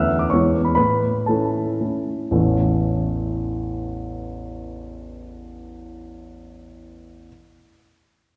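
Heard from further back in a concert hall with a wet 1.9-second reverb, this rustic, proud excerpt of a romantic classical dance in 3/4 and A major features a solo warm grand piano, up front with short sustain across a range from A1 to E6, playing dotted rhythms with rubato at 111-137 BPM, easing back through the opening 2.3 seconds before a new section begins.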